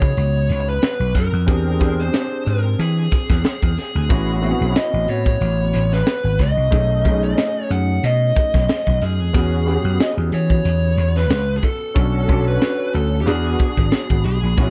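Slick and urban, this polished 1980s jazz-funk pop excerpt moves at 92 BPM in 4/4 with a light sixteenth-note swing, its chords running from C#m9 through E7alt, A6 and B13 to E6, Bm7 and E7. A punchy, amped slap bass and a crisp fusion kit with a high-tuned snare and pumping small-room sound sit up front, while a grand piano with ensemble chorus supplies present, polished accompaniment. Over them a dark, compressed fuzz guitar carries the picked, distorted melody, all bathed in light reverb.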